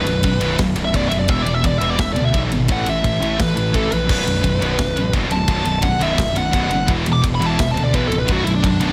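Epic and heavy, this short cut of heavy metal sits in a half-time feel, with a bluesy, overdriven lead guitar soloing up front from the very start to the end at 8.9 seconds. Beneath it, a pair of bright, high-gain electric guitars pick a distorted riff in the background, moving through B5, E5 and A5 power chords before settling on B minor. A growly, fuzz-laden electric bass, direct and amped, holds down the low end. A tight acoustic metal kit enters at 0.1 seconds with a tight kick, a medium-tuned snare, ride and crash cymbals, sitting mid-forward in a studio room. The lead's warm tone rides on top of the rhythm section, and a studio reverb adds space to the mix.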